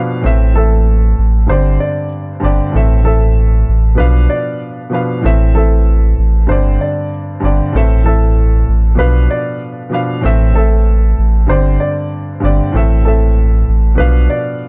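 A dark, warm production with little reverb frames this reflective but tough hip hop cut, taken from a longer piece and moving at 96 BPM in 4/4 with a 62% swing on the sixteenths. A grand piano sits up front as accompaniment, its mellow, natural tone given short sustain, a cassette tape colour and plate reverb as it ranges from G2 to F5. Underneath, a full, deep sub bass with an added octave enters at 0.2 seconds, its sine-and-triangle body hitting with a fast attack and sustained notes held between G1 and B1, placed prominently in the mix. From 0.6 seconds a quieter, woody upright piano carries the melody within the narrow span of A4 to D5, its shadowy, short-sustained tone treated with plate reverb and digital delay. The harmony in A minor cycles through Am, Gsus4, Am and Bdim, repeating this brooding loop for the full 14.7 seconds.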